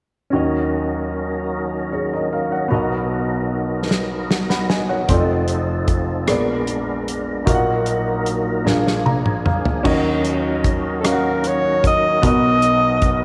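A clear concert grand piano with deep bass and a percussive tonewheel organ, its key click and fast rotary speaker shimmering, open this solemn, fervent slow gospel excerpt in Eb minor, moving at 50 BPM in a straight 6/8 through chords such as Ebm7, Bmaj7 and Bb7b9. An acoustic country drum kit with a punchy kick and medium-tuned snare arrives at 3.9 s with a fill, and it joins the piano in a shared fill before the second section begins at 9.9 s. A bright alto saxophone steps up front with vibrato and tape echo at 11.0 s, carrying the melody in a pop style, all set in a lush echo chamber reverb.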